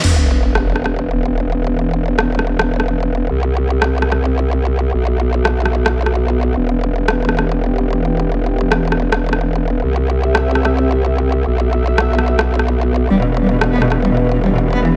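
A half-time 4/4 groove drives this aggressive, heavy wobble dubstep cut from a longer piece: an overdriven, layered electronic drum kit with crash cymbal and rim click sits up front beside a growling, saturated wobble bass, a sub drop impact fills the first 1.7 seconds, a lush, detuned sawtooth pad warbles with chorus in the background, and an expressive bowed cello with vibrato and portamento enters at 13.1 seconds through dub echo.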